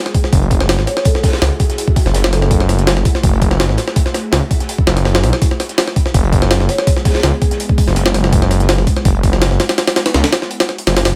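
Nostalgic and dark, this excerpt of drum and bass jungle at 165 BPM in F# minor pairs a gritty, pitched-up sampler-style kit with thumpy kick and high-tuned snare, up front over a very quiet, dark breakbeat kit with its own high snare, while a thick, beating detuned saw bass growls menacingly beneath an ethereal, chorused and phased pad moving from F#m9 to E/F#, a mellow soft-mallet vibraphone rings with dub echo in the background at 0.9 and 6.7 seconds, and the kick drops out at 10.5 seconds.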